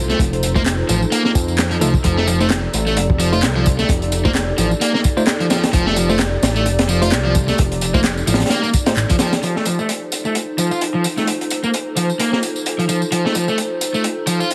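An overdriven semi-hollow guitar riff, picked and up front through a low-pass filter and delay, leads this swaggering, raw breakbeat excerpt at 130 BPM with swung sixteenths, tuned to A4 = 438 Hz over an F7 chord, and a filter sweep runs across the guitar from 9.4 seconds. Beneath it, a crunchy, gritty acoustic breakbeat kit with a punchy kick and high-tuned snare is joined by faint analog tambourine and handclaps, while a fat, nasal, detuned analog bass holds the low end until 9.1 seconds. A warbling, nostalgic tape-like pad with chorus and sidechain pumping sustains chords throughout, very quiet bell-like tine electric piano stabs sparkle in the first half, and the whole mix carries a heavily compressed radio sound with light reverb.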